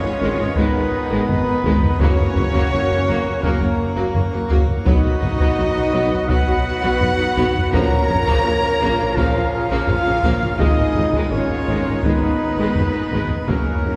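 A straight 4/4 pulse at 84 BPM drives this epic, heroic orchestral film-score passage in G# dorian, with heavy-stick taiko drums, compressed and saturated, entering at 0.6 seconds beneath chords moving from G#m through F#, B and A#m back to G#m. A lush, vibrato-laden violin section carries the melody while a second, intense and distant violin section, an airy, hollow flute section and a focused viola section fill the inner lines, and a mellow French horn section, a bright trombone section and a majestic, brilliant full pipe organ hold sustained chords under roomy solo trumpet stabs. Expressive chamber cellos, symphonic double basses and a very quiet solo tuba, which joins at 0.2 seconds, anchor the low end, all set in a church or concert hall with a cathedral-like wash of reverb and a faint mains hum in this fragment of a longer piece.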